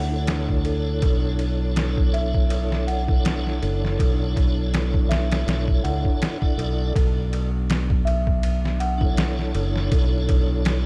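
Trip hop with a melancholic, smoky mood, this short excerpt pairs a gritty, pitched-down sampler-style drum kit of thumpy kick, ride and snare, entering at 0.3 seconds, with an up-front fingered electric bass, a piping, lightly overdriven tonewheel organ turning through a slow rotary speaker with key click and tape echo, delicate bell-like celesta arpeggios, and a tense, string-like drone sustained in the background, all set in a dark, warm production over a single Bm11 chord.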